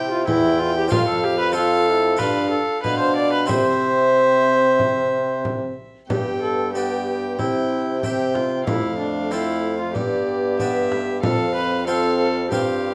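This is a stately, courtly renaissance-style consort dance in a straight four, cut from a longer piece. A single bowed violin carries the melody with a gut-string, period-style tone, while a reedy viola, sitting up front in the mix, plays a second line beneath it; both use light vibrato. A flemish-style harpsichord with airy, brilliant octave strings supplies plucked accompaniment across a broad span, joined by a mellow solo trombone with a smooth top and a soft-attacked, warm solo bassoon holding the bass. A small, bright frame drum played with hard hands enters at 0.3 seconds and keeps the dance moving. The harmony circles through C, F and G over two sections, the second beginning at 6.1 seconds, and everything sits in a moderate stone-room reverb captured by close, detailed microphones.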